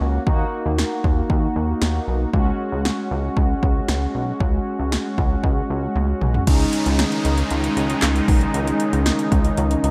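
Mellow, brassy synth chords with a chorus sheen open this upbeat yet wistful synth-pop clip at 116 BPM, over a glossy, nasal chorused synth bass, and a deep house drum kit joins at 0.3 seconds with a deep kick, punchy snare, metallic hats and an overdriven edge. The harmony moves from D#m to C#sus4, and after a drum fill at 6.0 seconds the music shifts to C#sus2 at 6.5 seconds, where an airy, detuned, resonant pad and an electronic downlifter enter. The production is dark with light reverb, keeping the drums, bass and brass up front.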